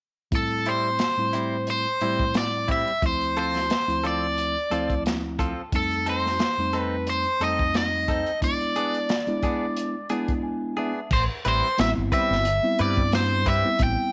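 Straight-eighth soul blues in A minor at 89 BPM, smoky and mournful, with a lightly swung sixteenth feel and a cycle of Am7, Dm7, F7 and E7 chords resolving to Am9. A biting, overdriven electric guitar carries the melody up front over a mellow tine electric piano, a crunchy, saturated breakbeat kit with dark cymbals and a tight kick, and twangy, compressed stabs from a clean direct-recorded guitar. The electric piano plays a fill at 10.1 seconds before a round, dark fretless bass with ensemble chorus enters at 11.1 seconds, all in a small room with light reverb, in a passage cut from a longer piece.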